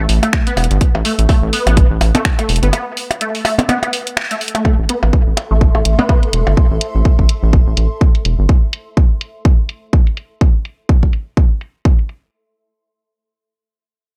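A dry, close mix of hypnotic, quirky minimal techno with a swung groove, opening on a drop and a brief break that holds an accent at 4.2 seconds. A punchy, tape-warm electronic kick sits up front, joined by a house kit of filtered finger snaps and hi-hats, echoing percussion blips and a dark, rubbery square bass that pumps against the kick, while a squelchy, resonant blip pluck riff runs through phaser, chorus and dub echo. From 5.0 seconds a faint, cloudy granular pad drifts in over an A minor chord and fades away by 8.5 seconds, leaving the drums to carry the close.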